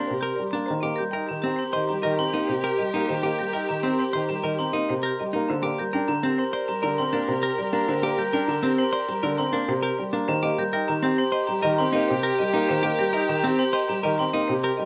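A straight, propulsive 4/4 pulse at 100 BPM drives this bright minimalist pattern piece in Eb major, cut from a longer work, where a woody marimba carries the melody over up-front concert grand piano with deep bass, a clean, compressed electric guitar and a sparkling, bell-like glockenspiel both play arpeggios (the glockenspiel entering at 0.7 seconds), while a soprano saxophone with vibrato adds a second line and a bowed, sul tasto chamber violin section holds soft-attack chords in the background, all set in light reverb with close, detailed miking as the harmony moves between Gm and Eb.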